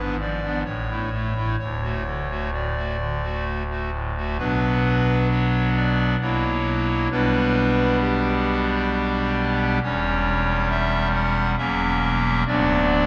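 A classical, chorale-style piece for solo pipe organ, cut from a longer work, unfolds in a reverent, serene mood at a slow 63-70 BPM in 3/4, with a freely breathing rubato. The organ speaks through a clarinet reed stop with a hollow, romantic voicing, placed up front and spanning a range from D1 to F#5. The harmony opens in D major, passing from a G#dim7 through A to D, before turning to B minor at 4.4 seconds. From there, the chords move through F#7/B, G/B, C#dim/E and F#7/E, settling on Bm/D near the close at 13.1 seconds. A long, wet church reverb of 3.8 seconds surrounds the instrument, and the production leans dark.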